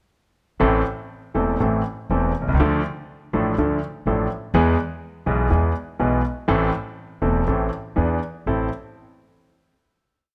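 A bright grand piano provides the accompaniment in this short, complete tango piece, its brilliant, up-front tone carrying audible action noise that lends an intimate feel as it plays a milonga rhythm from 0.6 s to 8.7 s. Beneath it, a pizzicato upright bass with gut strings adds a woody, thumpy low end, following the same milonga rhythm across the same span. The mood is dramatic and tense, set in A harmonic minor at 123 BPM in 4/4 with a rubato feel. The harmony moves from Am through Dm and E, returns to Am, then leans on E7 before landing on a closing Am chord that rings out from 8.5 s. Close, detailed microphones and a light reverb keep the sound near and clear.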